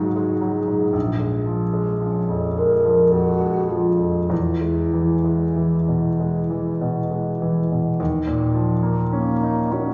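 A clear baby grand piano sits up front in this wistful, mysterious impressionist classical duo, its intimate, natural accompaniment carrying long sustain and audible action noise as it moves through Bb5 and E harmonies to an Eb7sus2 at 8.0 s. Above it, a wooden-headed alto flute sings the melody with a pure, straight, tongued tone that sounds mellow and distant, both parts playing throughout this 9.9-second passage cut from a longer piece. The rubato pace hovers around 47-58 BPM in 3/4, and a wet recital hall reverb places the listener further back in the room.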